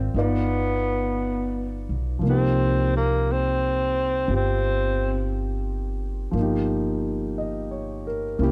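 A dry, close recording in a small room, this has the intimate, vintage feel of a 1970s studio session, with every instrument placed up front. It is a short cut from a longer melancholic, wistful jazz ballad in a slow, swung 4/4. The grand piano comps throughout with a natural, long-sustaining tone, its action noise audible beneath the chords. The upright bass is played pizzicato with a woody, growly, thumpy voice from steel strings. The breathy tenor saxophone carries the melody in a whispered subtone, with soft attacks, scooped notes and vibrato, and it takes a solo from 2.2 s before falling silent at 5.3 s. The harmony settles from a tense dominant chord onto C minor and later shifts to an Eb9 voicing over G.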